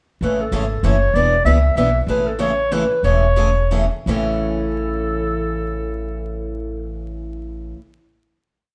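Lively and charming, this complete short piece of acoustic string swing in 3/4 moves at 164-193 BPM in A major, with a breathy, whispered clarinet up front carrying a motif-based melody in sentence phrases, its soft attack, scooped notes and light vibrato giving an intimate, vintage feel. A boxy parlour steel-string guitar picks rhythm on every beat with short, accented chords on two and three, a second archtop guitar sits in the background with audible finger squeak, and a woody, thumpy upright bass on gut strings plays root and fifth with walk-ups. The band plays live in a stone room with moderate reverb and vinyl crackle, slowing down from 2.1 to 4.1 seconds before settling on a final A chord at 4.1 seconds.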